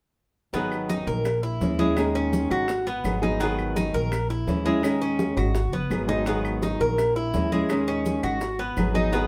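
A Cuban tres stands out up front, picking arpeggios on its metallic double strings, some of them octave-doubled, in this nostalgic, sultry Cuban son and guajira passage cut from a longer piece. It sits in G# minor at a brisk 168 BPM in straight 4/4. A small, fingerpicked nylon-string guitar shares the foreground with warm accompaniment, and a dark, thumpy upright bass with gut strings plays pizzicato up front as well. Ringing, medium-tuned congas struck with hard hands sit close and dry in the background, joined by very quiet, tight high-tuned bongos, woody claves and grainy, mellow maracas. The harmony cycles through G#m7, A#m7b5 and D#7sus4, and a drum fill from 5.7 to 6.3 seconds falls within the single section that runs from 0.5 to 9.3 seconds. A moderate studio reverb lends the whole ensemble a cosy sense of space.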